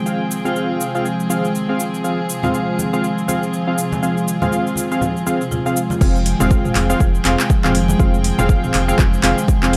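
Afro house cut from a longer piece, warm and driving, with a soft, floating string section holding sustained chords, woody marimba arpeggios under a filter sweep and tape echo, and mellow, detuned analog key stabs with chorus sitting up front, all pumping against the beat. A deep house kit with metallic hats, cabasa, handclaps, toms and crash adds overdriven grit, and ringing congas enter in the background at 2.4 seconds. At the drop at 6.0 seconds, a round, dark analog bass and an overdriven, deep electronic kick arrive, with the kick punching up front through a dry, gritty hardware sound.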